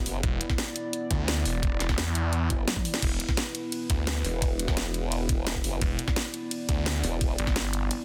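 This excerpt of dark technical drum and bass runs at 172 BPM with a mechanical, tense mood, built on a snarling distorted saw bass that growls bright and up front from 0.2 seconds, joined by a wobbling formant-sweep wobble bass with chorus and tube saturation that returns at 2.5 seconds. An electronic kick drum knocks beneath a layered drum kit with a cracking snare, crash, ride, hi-hat and toms, including a drum fill at 2.7 seconds. A moody, deep analog pad holds sustained chords behind them with subtle chorus and sidechain pumping, all set in light digital ambience with a dense, heavily limited master.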